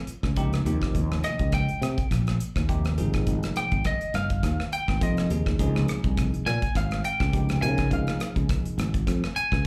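A lightly swung sixteenth-note groove in 4/4 drives this intense electric jazz fusion clip, with a tight, polished drum kit of hi-hat, kick and rim click sitting up front beside a growly, punchy fretless bass. A bell-like tine electric piano adds bright, clean chords through phaser, plate reverb and slapback echo, moving from a minor add9 through lush major ninth colours to a closing minor eleventh. At 1.2 seconds a dark, slightly broken-up lead guitar enters for a compressed, picked solo in a high, narrow range, coated in slapback echo and plate reverb, all heard as a live gig through the venue's PA with club reverb.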